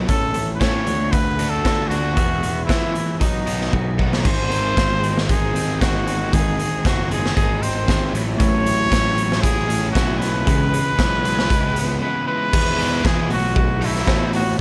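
Upbeat, jangly indie rock in a straight 4/4, cut from a longer piece, where a clear, smooth-topped trumpet sings the melody up front with pop-style vibrato. In the background, a dark, clean picked electric guitar and a bright, crunchy overdriven guitar with analog chorus play riffs over a punchy, fuzz-driven picked bass. The raw garage drum kit sits forward, saturated and gritty in a pumping stone room with a rolled-off top, and it marks a fill at 3.7 seconds and a break at 12.0 seconds before the chords turn to Emaj7 and B7sus4 at the close.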